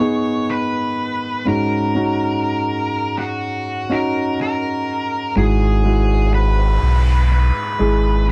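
A dark, fuzz-distorted electric lead guitar picks a longing melody over an intimate, up-front concert grand piano with deep bass, long sustain and audible action noise, opening this short, emotional slice of a slow pop ballad at 62 BPM in 4/4, moving from G#m to D#m7/G#. At 5.4 seconds the harmony shifts to Eadd9/G# as a deep, full sub bass with an added octave enters up front, and from 6.0 seconds a quiet electronic noise sweep comes into the mix. The sound is dry and close, with the feel of a 1970s-style studio recording.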